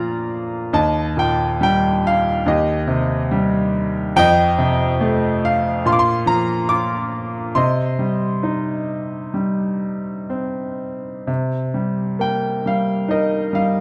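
Set in a dark, moderately reverberant stage sound with a 2.0-second decay, this short excerpt of wistful, reflective classical music features a brilliant, up-front baby grand piano playing alone in C dorian with long sustain, ranging from Eb2 to D6 at a rubato 60-73 BPM in 4/4 and moving through Bb, Eb, F7 and Cm harmonies before turning to a new passage on Cm7 at 11.3 seconds.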